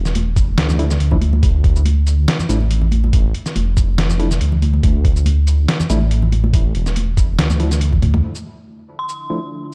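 A dark, cavernous digital mix carries this half-time deep dubstep excerpt in D minor at 141 BPM, where a rumbling, detuned saw bass sits up front beside a thumpy, pitched-down electronic kick and a gritty sampler-style kit of hi-hat, shaker, snare and toms, while soft-handed, high-tuned congas and a hollow, percussive organ stab trail dub echo until a drum fill at 8.0 seconds leads to a brief close at 9.0 seconds, when a warbling ambient pad with chorus and reverb enters under an eerie FM bell with chorus, phaser and dub echo.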